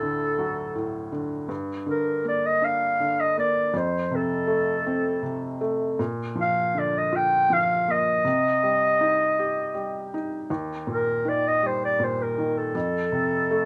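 A light reverb lends this short cut from a longer acoustic folk-pop ballad a gentle sense of space, and the mood is heartfelt and nostalgic. It moves at an unhurried 80 BPM in a straight 3/4 lilt, set in Bb major, with the harmony drifting from D through Gm, F and Bb to Cm, Eb and back to F. A growling clarinet carries the melody up front from 0.0 to 13.7 s, its raspy, gritty subtone colored by light vibrato, soft attacks and scooped notes in a jazz-inflected solo voice. Beneath it, a felt-muted upright piano provides the accompaniment across the same span, its mellow, intimate tone shaped by thin felt and accompanied by audible action noise. The contrast between the clarinet's rough edge and the piano's hushed, muted cushion gives the passage its tender, close-up character.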